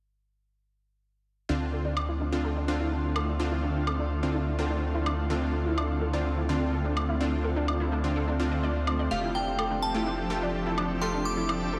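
A straight 4/4 pulse at 126 BPM drives this bittersweet progressive house excerpt in D minor, where a round, deep analog bass sits up front under punchy supersaw stabs with analog delay, a detuned unison pluck playing arpeggios through a filter sweep, a background woodblock re-recorded in a small room, and a shimmering ambient pad entering at 2.0 s, until a glassy, crystalline FM bell melody arrives at 9.1 s as the chords move from Dm7 to Fadd9, all soaked in a dreamy cathedral reverb with a faint mains hum.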